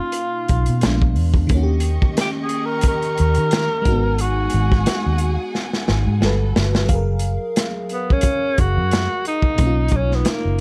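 Warm and soulful, this neo-soul R&B excerpt moves at 89 BPM with a gentle sixteenth-note swing in F# major, cut from a longer piece, as a breathy, intimate tenor saxophone with tape echo carries the melody over a lush, dreamy FM electric piano with a soft pad layer and chorus. A crunchy, saturated breakbeat kit with a tight kick and rolled-off top sits up front beside a round, punchy, foam-muted electric bass, while a distant string section with vibrato and portamento holds sustained chords from 1.5 to 6.9 seconds. A drum fill leads into a saxophone solo at 6.9 seconds, as the harmony turns through rich jazz chords such as Bmaj9#11 and F#maj9 in a dry, close sound.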